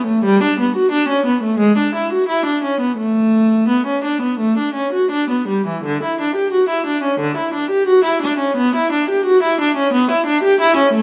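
A moderate recital-hall reverb, with a decay of about 1.4 seconds, surrounds a single viola placed up front. This classical piece, a baroque-style suite movement for unaccompanied viola in D major, is cut from a longer work and runs from 0.0 to 11.0 seconds. It moves at about 86 BPM in 4/4, but the beats are uneven and the rubato gives the line a flowing, dance-like ease. The one bowed player has a gut-string, reedy tone with a smooth top and a light vibrato, played in period style across a range from D3 to G4. Tuned slightly high at A4 = 441 Hz, the viola carries the whole texture alone.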